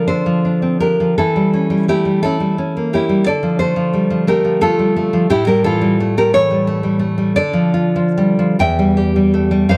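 Closely miked and detailed with light reverb, this brief excerpt of a romantic solo classical guitar piece in D minor has an intimate, passionate mood, as the up-front, warm nylon-string guitar is fingerpicked in a rubato 6/8 at about 46-61 BPM, its deep classical tone and audible finger squeak carrying a sequence from Dm through A7 to a closing Emadd11.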